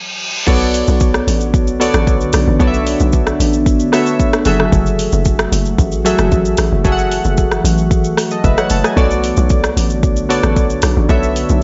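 A dry, dark-toned mix carries this late-night, deep amapiano excerpt in B minor at 113 BPM: a brief electronic reverse cymbal leads into the drop at 0.5 seconds, where round, chorused analog keys sit up front beside a hollow, bouncy log drum bass and a produced afro-pop kit of deep kick, hi-hat, rim click, shaker and crash, while a glassy, ethereal FM pad with phaser and built-in reverb joins in the background at 1.5 seconds over chords moving from Bm9 to F#m9 and back to Bm9.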